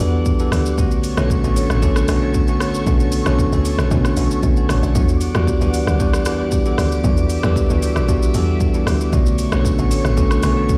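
A woody, punchy log drum bass anchors this soulful, late-night amapiano cut at 115 BPM in E dorian, alongside a bright, bell-like tine electric piano up front moving between Em9 and Bm9 and a soft, breathy pad with chorus, phaser and sidechain pumping. A deep house drum kit with a deep kick, metallic hats, rim click and shaker enters at 0.3 seconds, and background marimba stabs with medium mallets and delay follow from 0.5 seconds, the whole mix heard in a large studio reverb as if played on a big sound system in a bare room.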